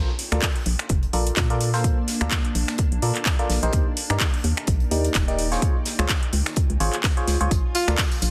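A barking FM electric piano riff opens this feel-good, euphoric slice of piano house, its biting, percussive tone colored by chorus, phaser, tremolo and tape echo and pumping against the kick, while a hollow, organ-like FM bass sits dark and up front beneath it. Within moments a granular cloud pad drifts in behind, blurred and evolving with its own reverb, and a house drum kit of finger snaps, handclaps, metallic hi-hats and tambourine arrives tape-warm and up front. The electronic kick enters at 0.4 s, punchy and layered, while a very quiet acoustic studio kit adds extra hi-hat and a medium-tuned snare underneath the swung groove. The chords move from Bbmaj7 to Ebmaj7 and Dbmaj7 before returning to Bbmaj7, and at 7.7 s a breathy alto saxophone slips in with a single scooped, jazz-style note carried off on tape echo. The mix is dense and heavily limited, with light digital ambience around the parts.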